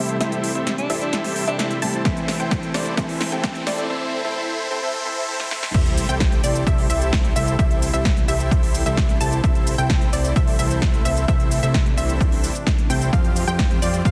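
Driven by a straight 4/4 pulse at 130 BPM, this uplifting, anthemic festival progressive house cut in C major opens on a build-up with a drum fill, a filter sweep and a big-room dance kit of punchy snare, crisp hats, cabasa and crash, before an overdriven electronic kick enters up front at 2.1 seconds. A dark, mellow concert grand piano with tape echo sits in the background through the opening, joined by a lush, slow-blooming unison pad with chorus, detuned sawtooth pluck arpeggios high in the register, and a fat, saturated analog bass, all breathing with sidechain pumping. A bright alto saxophone makes a brief pop-style appearance with light vibrato, while a riser and sub drop climb beneath the build toward the drop at 5.7 seconds, marked by an impact. From the very start, a huge, thick, compressed supersaw riff with vibrato, a low-pass filter and tape echo carries the anthem over the pumping bass and pad, the chords moving from C6 to Fsus2. 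The mix is dense and heavily limited with light reverb, and the drums carry the air of a large room.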